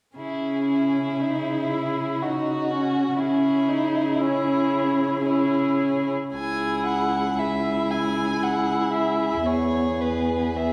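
A recital hall's reverb gives this excerpt of a string quartet a wet, spacious sound, heard from further back in the room. It is a slow, melancholic and elegiac romantic movement in C# minor at 58 BPM in 3/4, with uneven beats and a rubato feel. All four players enter together at 0.2 seconds. The first violin carries a focused melody with vibrato and a smooth top, while the second violin adds a rich, expressive second line with portamento that sits more distant. The viola's accompaniment, also marked by vibrato and portamento, sits up front, as does the cello's intimate, close sul tasto bass, with light vibrato, a soft attack and an airy bow. A new section begins at 6.3 seconds, and the harmony moves from C# minor to E at 9.5 seconds.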